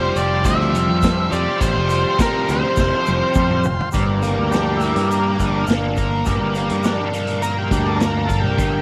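Soaked in a moderate echo-chamber reverb, this mysterious, trippy psychedelic rock excerpt in G dorian moves at 103 BPM in a straight 4/4, with a dark, fuzzy octave-fuzz lead guitar carrying the melody through tape echo until 3.6 s over a biting, bright, double-tracked overdriven guitar riff spun through a rotary speaker, a growling overdriven fingered bass, a buzzy vibrato-laden combo organ holding chords, a tight vintage drum kit with a rolled-off top, and a grainy egg shaker in the background, until a drum fill at 2.8 s leads into a transistor combo organ solo at 3.9 s as a very quiet, ominous rumbling drone slowly swells in underneath.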